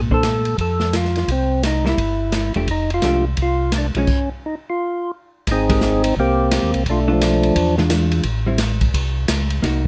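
The recording is close and detailed, with little reverb, so this short cut from a longer soul jazz organ trio sounds dry and immediate. A mellow, round tonewheel organ carries the bass line with audible key click through a slow rotary speaker. A second, fat and percussive tonewheel organ sits up front with the melody, its third harmonic percussion spinning through the same slow rotary effect until 7.8 seconds. A clean, fingered and compressed hollow-body electric guitar fills in the accompaniment, while an acoustic jazz kit in a small room adds dark cymbals, a medium-tuned snare and a boomy kick with a rolled-off top. The swung groove feels bluesy and soulful, moving through jazzy chords before a stop from 4.1 to 5.5 seconds, after which a second section brings richer harmony that settles on a minor chord at the close.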